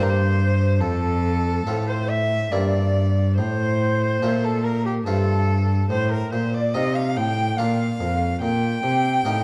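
Radiant and dance-like, this short baroque-style sonata passage in three sets a warm violin melody with vibrato and portamento against a second line from a bright silver concert flute with soft, airy attacks, while an airy plucked harpsichord fills out the accompaniment and a rich, smooth bowed cello sits up front on the bass, all four playing throughout the 9.4 seconds in a recital hall's moderate reverb with a dark production and vinyl crackle.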